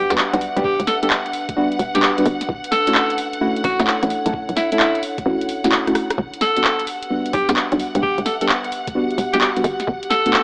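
A skippy two-step garage groove at 130 BPM in 4/4 swings its sixteenths, with a layered electronic drum kit of woody snare, metallic hats, rim clicks and handclaps up front. A gritty, thumpy pitched-down kick sits low from 0.6 seconds, and a short drum fill arrives at 5.8 seconds. In this moody E dorian piece, a breathy jazz-style alto saxophone sings a solo melody with vibrato and scooped notes over a hollow, knocking FM bass, dark chorus-laden chord stabs, a smooth bowed violin section pumping behind them, and a warbly, nostalgic lo-fi pad in the background, as the chords move from Gmaj7 through Dmaj7 and Em7 to Gmaj9, all heard through light digital ambience and an AM-radio tone.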